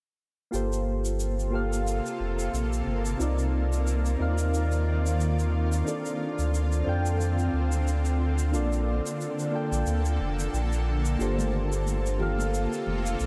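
Sunset chillout in G minor at 90 BPM with a swung 16th-note feel, warm and relaxed, this short cut from a longer piece opens at 0.5 seconds with round, decaying synth keys colored by chorus, phaser and digital delay, a deep, up-front sine sub bass with tube saturation and a filter sweep, and a warm shaker with a rolled-off top, while a shimmering, ethereal pad with octave-up shimmer and a granular, detuned texture arrives at 1.5 seconds. The chords move through Gm11, Cm11, Dm7 and Bbmaj7 before returning to Gm11, and bright, vintage-sounding congas with hard hands sit in the background from 11.4 to 13.0 seconds. A light, small-room reverb gives the mix an intimate space.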